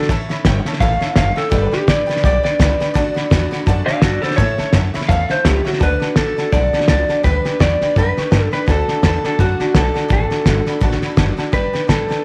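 A slightly broken-up electric guitar through a small old amp leads this rowdy, retro rockabilly passage. Its clean, compressed solo sits up front with tape echo for the first 5.8 seconds, and the guitar keeps carrying the melody into the second section. Beneath it, a cloth-damped drum kit thuds along with a fat snare, tight kick and hi-hat, its muffled, saturated tone rolled off at the top. An upright bass plucks woody, dark notes on gut strings, while a bright dreadnought acoustic guitar with audible finger squeak and a jangly, boxy tack piano fill out the background. Swung eighth notes drive the groove, and light reverb with small room ambience wraps the lo-fi sound of this passage, cut from a longer piece, which ends at 12.2 seconds.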